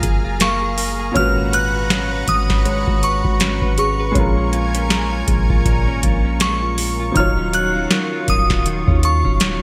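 Romantic and dreamy, this contemporary R&B excerpt moves at 80 BPM with a swung sixteenth feel, drifting over rich F#maj9, G#m11 and D#m9 chords in a bright 1980s-style digital production with light reverb. A booming analog drum machine sits up front with a deep kick, crisp snare, metallic hats and gated reverb, while a soft, round 808-style bass supplies dark low end and a detuned sawtooth pad with chorus holds lush sustained chords. A clean, direct-recorded electric guitar picks chorused, delayed arpeggios beside a worn grand piano in the background, and from 0.4 seconds a crystalline FM bell carries the high melody, joined by a delicate, sweet celesta adding soft texture.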